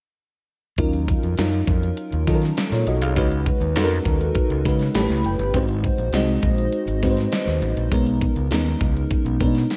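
An FM electric piano layered with a soft pad provides the accompaniment in this polished 1980s jazz-funk pop excerpt, its mellow, dreamy tone bathed in lush chorus and sitting up front from 0.8 seconds onward. The mood is nocturnal and urban, moving at 101 BPM in a straight 4/4 feel in Eb minor, with the harmony passing through Ebm9, Db9sus4, A9, Ab7 and Bmaj13. Beneath it, an overdriven fingered electric bass adds a punchy, amped low end, while a pop drum kit with a knocking kick, fat snare and crisp hats carries gated reverb. Around 4.6 seconds the electric piano steps forward with a brief fill. The overall sound is dry and close, with the bass stopping at 9.6 seconds just before the keys and drums finish at 9.8 seconds.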